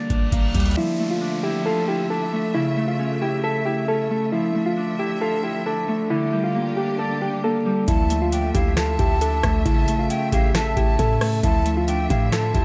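A ringing, fingerpicked Celtic harp opens this melancholic, brooding half-time trap excerpt, joined at once by a reverse cymbal and downlifter, a deep kick, crisp snare and metallic hats from an up-front analog drum machine, and a boomy, sine-like 808-style bass that drops out after a brief hit. From 0.8 seconds, soft, round electric-piano-like synth keys carry a mellow melody with chorus, a filter sweep and tape echo, over distant, lush bowed strings holding sustained chords through a dark minor progression. At 7.9 seconds the drums and bass return, and a breathy, expressive jazz flute with vibrato and tape echo adds a high second line, all set in studio reverb with a faint vinyl crackle.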